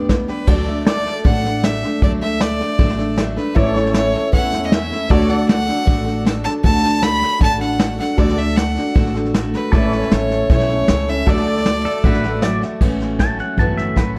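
A clear, biting fiddle carries the melody with light vibrato over an easygoing honky-tonk and classic country groove at 156 BPM in D major, backed by a picked dreadnought acoustic guitar, a woody, thumpy pizzicato upright bass and a vintage brush kit with a punchy kick and a rolled-off top. A very quiet, jangly, detuned upright piano and a background pedal steel guitar holding sustained chords with volume swells fill in behind, while a second, twangy pedal steel line enters at 11.9 s and takes a short solo from 12.8 s after the fiddle stops. The nostalgic mood is framed by light reverb and a dark, warm production in this excerpt cut from a longer piece.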